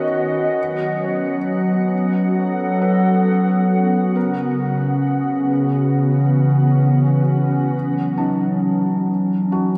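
Luminous and warm, this ambient excerpt drifts at 67 BPM in 4/4, tuned to A4 = 443 Hz, over chords moving from D#m7 through F#m and C#m back to F#m. A warbling, nostalgic tape-like pad with a detuned, lo-fi character sits up front with chorus, while a nasal, organ-like drone with ensemble chorus holds steady until 7.8 s. In the background, a soft, muted upright piano plays delayed arpeggios and fades out across the first 7.7 seconds, the whole scene set in a lush hall reverb.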